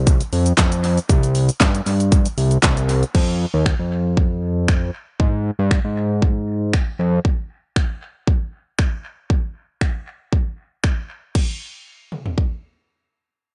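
A straight 4/4 pulse drives this energetic, bittersweet dance-pop excerpt at 117 BPM, tuned to A4 = 443 Hz. It opens on a drop, with the pop drum kit entering at 0.1 s. The kit is electronic and layered, with a punchy kick, a fat snare, crash cymbal, hi-hat, toms, shaker, handclaps and finger snaps, all re-recorded in a small room and placed up front. A thick analog bass, built from detuned sawtooth and square waves, sits equally forward, nasal and saturated, with a fast attack, a sustained, evolving tone and sidechain pumping, until it stops at 7.2 s and leaves the drums to carry on. The mix is dry on reverb but heavy with echo, and its top end stops around 10.3 kHz.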